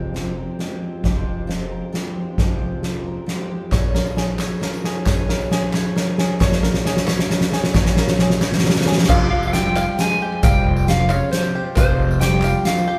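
A live band fills one large studio room with a moderate reverb in this stirring, bittersweet indie folk excerpt in triple time, its arrangement building. Fingerpicked steel-string acoustic guitar, full-bodied with audible finger squeak, and a boxy, shimmering picked twelve-string sit in the background beside a woody, thumpy upright bass, while a soft-mallet drum kit with a fat snare and boomy kick stands up front and carries a drum fill through the build-up. At 3.7 seconds, as the harmony shifts from Fmadd9 to Bbm7, a twangy bluegrass banjo adds arpeggios, joined by very quiet crisp group handclaps and a jingly tambourine; the steel-string guitar drops out shortly after. At 9.1 seconds the chord returns to Fmadd9 and the texture opens out: a dark, slightly broken-up electric guitar takes the melody with harmonic tremolo, a soft-attack French horn sings a low second line, and a very quiet, reedy chamber string section holds sustained chords with light vibrato and a gut-string tone.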